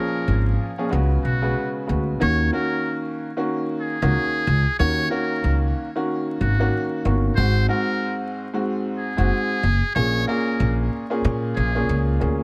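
Boom-bap hip-hop with a gritty, tough swing, cut from a longer piece, where a buzzy, breathy trumpet with a metal mute carries a jazz-style solo melody with light vibrato and delay over a clear, vintage upright piano with long sustain and a woody pizzicato upright bass entering at 0.3 seconds, all set in a small room with light reverb and vinyl crackle.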